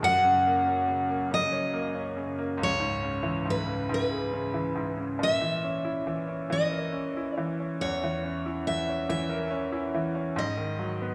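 A picked steel-string acoustic guitar carries the melody up front, its dreadnought tone full-bodied and close as it sings in a narrow upper range through this short excerpt from an acoustic folk-pop ballad in a straight 6/8. Beneath it, a bright concert grand piano plays the accompaniment across the whole 11.1 seconds, brilliant at the top, with deep bass and audible action noise that make it feel present and intimate. The mood is intimate and heartbroken, moving slowly from F# through C#m7 to a lingering A#dim at 5.2 seconds before settling on G#m7 near the end. Both instruments sit close to the listener, wrapped in the wet bloom of a scoring-stage reverb that lends the small duo a sense of space.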